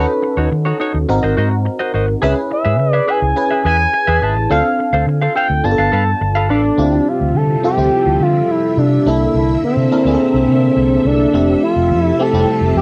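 Pop at 105 BPM in 4/4 with an urban, glossy mood and a cassette-tinged home-recording feel in a small booth, tuned slightly flat to A4 = 437 Hz and moving through jazzy seventh and extended chords. An up-front, smooth sawtooth synth lead with vibrato and chorus carries the melody over glassy, bell-like FM electric piano with a warbling tape character and plate reverb, and a dark, round, foam-muted electric bass. A clean, compressed semi-hollow guitar riff plays until 6.7 seconds, then a lush string machine with a sub octave and slow attack enters at 6.8 seconds to hold sustained chords through the end of this section cut from a longer piece.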